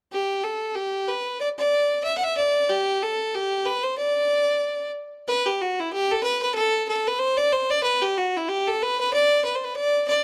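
Swung eighths in a brisk 4/4 at 186 BPM drive this dark, lively Celtic folk excerpt, where a single bowed fiddle, bright, biting and intense with light vibrato, plays alone up front from 0.1 to 10.2 seconds, moving into a new section at 5.3 seconds, all caught in a dry, close 1970s-style studio sound with a touch of small-room reverb.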